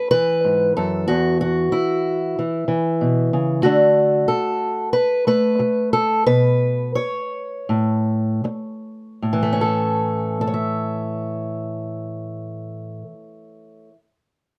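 Folk fingerstyle excerpt for a single fingerpicked acoustic archtop guitar, gentle and peaceful, its dark, woody tone with the dull sheen of old strings sitting up front under close, detailed microphones and light reverb, moving through Aadd9, E5 and D chords before slowing down between 3.6 and 9.2 seconds, then settling on A and opening into a brief new section at 9.2 seconds.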